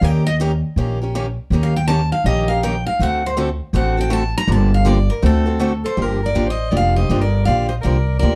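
A dark, lightly reverberant production frames this virtuosic, swinging jazz manouche excerpt in G minor at 161 BPM: a bright, auditorium-style picked steel-string guitar carries a plate-reverbed solo melody until 6.0 seconds over a boxy, up-front parlour guitar's accompaniment and a woody, thumpy pizzicato upright bass on gut strings, while a close-miked soprano saxophone with jazz vibrato enters softly as a second line at 5.8 seconds, as the harmony moves from Eb7 and D7 toward Gm9.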